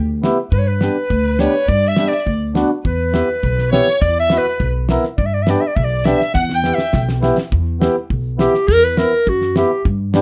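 Soulful and festive, this klezmer passage, cut from a longer piece, moves at 103 BPM in a straight 2/4 and sits in E dorian with a raised fourth, shifting between E minor and G major. A clear, close-miked clarinet carries the melody up front in a classical style, entering at 0.5 seconds, soloing through the opening section and playing until 9.8 seconds. Behind it, a distant violin adds a rich, expressive second line with vibrato and portamento, stopping at 7.0 seconds. A mellow, reedy accordion with a dark, smooth tone fills out the accompaniment, while an upright bass plucks woody, thumpy notes on gut strings from the very first moment. The damped 70s drum kit brings a fat snare and a tight kick with a rolled-off top, adds a fill leading into a new section at 7.5 seconds, and the whole ensemble sits in a moderate studio reverb.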